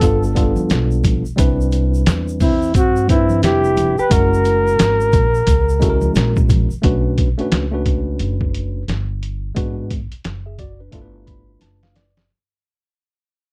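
A breathy flugelhorn carries the melody up front from the opening, its whispered, intimate tone shaded with vibrato and a soft attack, while a dark, clean electric guitar traces a second line in the background. This smoky, cool jazz-hop cut moves at 88 BPM with a swung 16th-note feel, built on a dry, close 1970s-style studio sound. Underneath, a worn, slightly out-of-tune tine electric piano, lightly overdriven through its built-in speakers, supplies the chords, and a woody pizzicato upright bass anchors the low end. The sampler-style drum kit sits up front, compressed, pitched down and muffled, with a thumpy kick, a medium-tuned snare and hi-hat, alongside a saturated egg shaker and congas, played with soft hands and tucked behind. The flugelhorn and guitar drop out at 6.5 seconds, and the piece begins fading at 6.8 seconds over a new chord run from Bm9, closing with an electric piano fill and a drum fill before it ends at 12.3 seconds.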